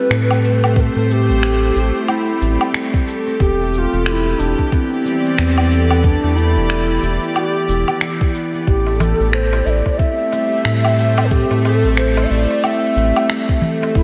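An airy bamboo bass bansuri carries the melody in this earthy, swung organic downtempo piece cut from a longer work, its tongued, vibrato-laden line roughened by vintage 12-bit sampler grit and trailed by analog delay. Beneath it, a ringing, fingerpicked concert harp arpeggiates through analog delay, a bright, detuned string-like drone pumps against the beat, and a deep, round analog bass sits up front over Am7, Em7 and back to Am7. Tape-warm electronic finger snaps, cabasa and woodblock set the groove, a soft electronic kick joins at 0.8 seconds, and a small, dry darbuka enters in the background at 8.9 seconds, all bathed in a dreamy, reverb-soaked hall.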